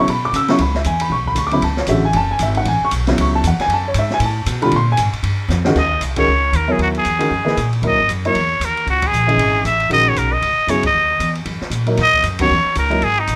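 An intimate upright piano with audible action noise opens this searching, intense modal jazz at a brisk 232 BPM swing, joined almost at once by a woody pizzicato upright bass and a small-room drum kit with dark cymbals and a boomy kick, before a drum fill at 5.5 s leads into a nasal, growling straight-muted trumpet solo entering at 5.8 s as the harmony settles into Eb phrygian, punctuated by band accents under light reverb.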